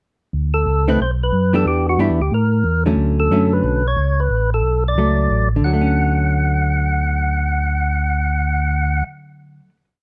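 A fat, percussive tonewheel organ carries the melody in call phrases built on a motif, its third-harmonic percussion and vibrato up front in this soulful, bluesy swing jazz piece at 182 BPM in D major. A second, mellow and round organ walks the bass beneath it with chorus vibrato, both organs lightly overdriven through a slow rotary speaker. From 0.9 s a clean, compressed hollow-body archtop guitar adds syncopated picked comping in three- and four-note chord shapes, and the brief piece settles on a final chord at 5.6 s within a dark production with light reverb.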